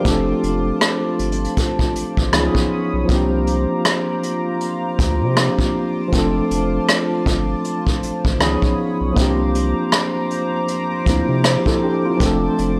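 Contemporary R&B in F major at a relaxed 79 BPM with a swung 16th feel, this dreamy, romantic excerpt cycles through F6, Db9 and C9sus4 chords. A clean tine electric piano sits up front over a shimmering, retro pulse-width pad with soft-attack chorus, while a deep, thick, saturated sub bass and a roomy brush kit enter at 0.1 seconds. The kit brings a punchy kick, hi-hat and rim click with a rolled-off top, and the whole mix sits in a studio reverb.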